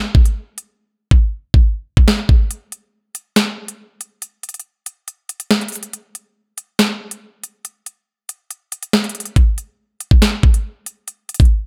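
Hip hop in a cold, menacing drill style, this short cut from a longer piece moves at 140 BPM in 4/4 with a half-time feel. A single electronic drill drum kit sits up front in a dry space, pairing a knocking kick and sharp snare with crisp hi-hats that drop out between 0.8 and 2.5 seconds. A break runs from 2.5 to 9.4 seconds before the kit stops at 11.5 seconds.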